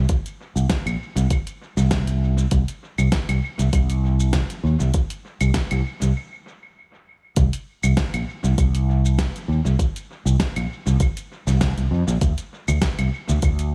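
Organic downtempo at 99 BPM in C minor with a light 16th-note swing, hypnotic and earthy, built on an up-front fretless electric bass with lush chorus and sidechain pumping, over a deep electronic kick and a layered, tape-warm deep house kit of claves, hi-hat, shaker and fat snare soaked in dub echo, all in a dry, echo-heavy mix that breaks into a stop from 6.2 to 7.4 seconds before a second section carries this excerpt through to 13.7 seconds.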